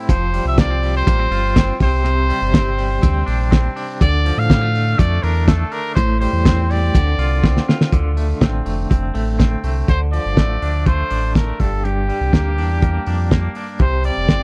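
A straight 4/4 beat from a muffled, cloth-damped drum kit with a fat snare and dark cymbals, placed up front, drives this wistful, restless jangly indie pop fragment, while a deep sine sub bass with octave anchors the low end, a bright, twangy electric guitar picks clean arpeggios through tremolo and tape echo, and a clear, punchy trumpet with light vibrato carries the melody, set in a dry, close 1970s-style studio sound with small room reverb and a drum fill at 7.4 seconds.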